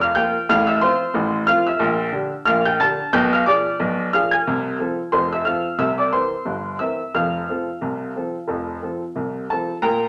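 A woody upright piano plays alone from the first moment, carrying a cheerful, playful ragtime strain in F major at 90 BPM in 2/4, with a swung sixteenth-note feel. Its short-sustain tone sits up front across a range from F1 to A6, and the chords move from F/A through Gm/Bb, Bdim7, F/C and C7 before settling on F at 7.1 seconds. The whole recording carries a wet club reverb and tube saturation, and it is tuned slightly below standard pitch to A4 = 436 Hz, in this brief section cut from a longer piece.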